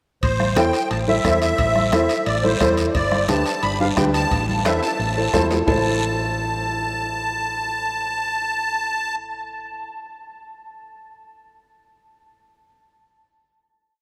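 This Latin cumbia piece in 4/4 has a passionate, danceable mood and plays as a complete piece. A reedy musette accordion carries the motif-based melody up front, its shimmering tuning close-miked and touched with delay. Beneath it, a dark, round hollow-body electric bass plays a cumbia bass figure, and an upright piano enters at 0.6 seconds with woody triad chords. The percussion brings a raspy, dry guiro, soft-handed congas and a soft-beater bombo sitting in the background, along with very quiet, compressed, metal-shell timbales and bell. After a drum fill, the percussion stops at 5.8 seconds while accordion, bass and piano hold a final chord, all of it soaked in a dreamy cathedral reverb.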